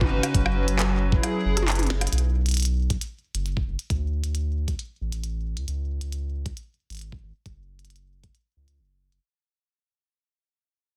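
This glitchy, melancholic IDM excerpt runs at 135 BPM in a straight 4/4, set in B dorian and tuned to A4 = 445 Hz. A hollow, flute-like pad of detuned square, triangle and sine tones holds soft sustained chords up front, colored by chorus and vintage 12-bit sampler grit. It voices an F#9sus4 before it stops at 2.1 seconds. Beneath it, a round analog bass with a deep, dark tone and fast attack sustains low notes prominently, carrying the harmony through B5, D5, C#5 and F#5. A compressed, pitched-up electronic kick thumps with gritty sampler character, drops out briefly ahead of a drum fill, then returns until 8.3 seconds, while a quieter glitchy kit of tiny snare, clicky hats, handclaps, rim clicks and toms adds tape-warm detail through delay. The dense, heavily limited master sits in light digital reverb, and the track fades out from 2.1 seconds to its close.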